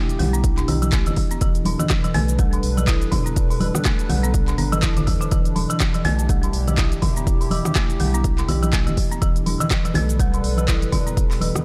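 A dry, gritty hardware recording with transformer saturation carries this hypnotic, spiritual afro house excerpt in E minor at 123 BPM, swung on the 16ths and resting on a single Em7 chord. A punchy, layered electronic kick leads the mix over a round, sine-like sub bass that is saturated and pumping, while woody hard-mallet marimba arpeggios with a rustic, band-limited tone echo through analog delay. Beneath them, a moody, detuned analog pad holds sustained chords through chorus and phaser, soft-handed congas sit in the background, and a smooth-hatted drum kit adds handclaps, rim clicks and shaker.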